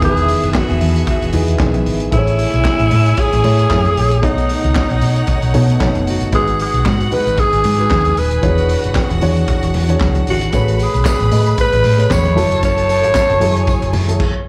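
A growling alto saxophone carries the melody up front, its raspy, gritty jazz-style tone softened by scooped notes and a smooth top, with slapback and tape echo trailing each phrase. Beneath it, a round, punchy hollow-body electric bass sits forward in the mix, while a dark, mellow baby grand piano fills in the accompaniment over lush seventh and ninth chords such as Emaj7, Amaj9 and F#m9. A clear, bowed studio string section adds a focused second line with vibrato, and a vintage drum kit drives the danceable disco groove with a punchy kick, a high-tuned snare, handclaps, hi-hat and dark crash cymbals, joined by softly played congas with a thick skin. A jingly tambourine slips in quietly in the background at 10.5 seconds and drops out at 13.8 seconds. Heard as a live gig through the venue's sound system with club reverb, this joyful, lightly swung excerpt is cut from a longer piece.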